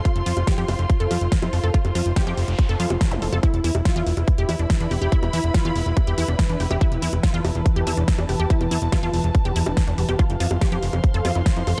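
Psychedelic trance at 142 BPM, driving and hypnotic, where a punchy, up-front electronic kick and a fat, saturated analog bass anchor a big-room kit of bongos, hi-hat and a huge snare, while a detuned unison pluck riff with delay and a dark, woody bowed string section both pump against the sidechain, an electronic noise sweep and zap flickers in the background from 2.1 to 3.4 s, and a very quiet, swarming granular drone joins at 5.0 s over chords moving from F5 to E5 and back to F5, all inside a digital ambience.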